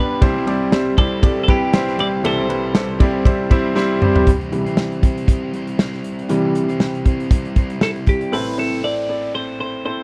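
Lightly swung sixteenths in 4/4 drive this hopeful, piano-driven pop excerpt, where a clear, polished baby grand sits up front beside a loose indie drum kit with a tight kick and rolled-off top. A bright, twangy twelve-string electric guitar carries the melody while a dark, overdriven semi-hollow guitar plays a picked riff underneath, all in a dry, close 1970s-style room. After a drum fill, the piano takes a solo from 4.3 seconds, the twelve-string returns at 7.8 seconds, and an electronic downlifter enters at 8.3 seconds as the harmony moves from C to Am.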